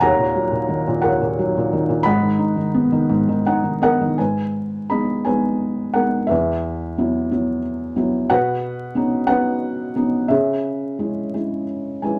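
A soft, felt-muted upright piano with thick felt, short sustain and audible action noise sits up front in this dark, reflective classical solo in 6/8 with a free rubato feel, moving through D#m7 and G#m7, slipping in a brief fill at 3.1 seconds, then continuing through Esus2 and Badd9 toward a closing C#m, framed by wet studio reverb and vinyl crackle in a passage cut from a longer piece.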